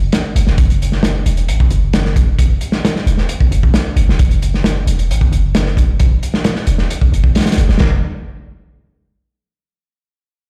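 Breakbeat at 133 BPM in F# minor, this swaggering, funky excerpt pairs a gritty, saturated drum kit with a punchy kick, medium-tuned snare, dark hi-hat and china cymbal played up front, over a deep, boomy 808-style bass with a sine body, a noise layer and a fast attack that decays, all heard through the large reverb of a big sound system in a bare room.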